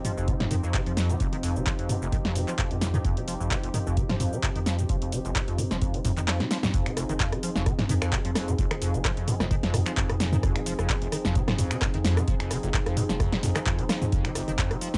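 Gritty and raw, this acid house passage rides a lightly swung 4/4 groove with the hazy character of a home recording on cassette. A squelchy, resonant square-wave acid bass carries the riff, its filter sweep, overdrive and chorus giving it a liquid bite, while a thick, saturated sine sub bass sits low in the background. A punchy analog drum machine stays dry and up front, its overdriven snare joined by handclaps, finger snaps, rim clicks, hi-hat, shaker and toms, and an electronic kick adds a deep analog thump re-recorded in a large room. Beneath the groove, a warbling vintage pad of detuned sawtooth and wave-folded sine tones holds soft-attack chords, pumping to the sidechain along with both basses. A drum fill at 6.3 seconds and a band accent lead into the drop at 6.7 seconds, where the harmony moves from F7(no3) to Fm7.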